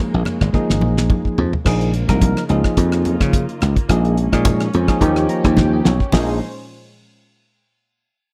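A bell-like tine electric piano with a lush chorus sits up front in this short excerpt of nocturnal, driving electric jazz fusion at 107 BPM in 4/4. It has a lightly swung sixteenth-note feel in Bb minor, moving through Bbm7, Bbm11, Db69 and Eb7 before returning to Bbm11. A dry, thumbed slap bass enters at 0.1 seconds, electric and punchy with a foam-muted bite, standing forward beside a damped 1970s drum kit with a fat snare, tight kick and dark cymbals. The kit plays fills at 0.5 seconds and again near the end, while the electric piano adds its own fill from 5.0 seconds. Very quiet, hard-handed congas ring close and dry, joined by a dark, woody string section in the background holding bowed, vibrato-tinged chords. The close, dry studio sound with a touch of reverb gives the whole a tight, intimate 1970s character.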